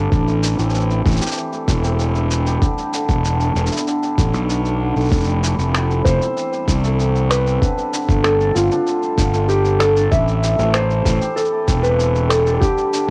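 A dark, round fuzz bass sits up front in this hopeful folktronica excerpt, its overdriven, fingered tone anchoring a steady 96 BPM groove in 4/4. A thumpy, muffled electronic kick and a pitched-down shaker with finger snaps give the beat a sampler-style, compressed grit, both coloured by overdrive and cassette tape. Over this, an acoustic cimbalom plays shimmering, ringing arpeggios, softened by cassette tape and tape echo. At 6.0 seconds a felt-muted upright piano enters with a mellow, intimate melody. The harmony moves through Am7, Em7, Fmaj9#11 and G9sus4 before returning to Am7, all held in a light reverb with the cozy, homemade character of a cassette recording.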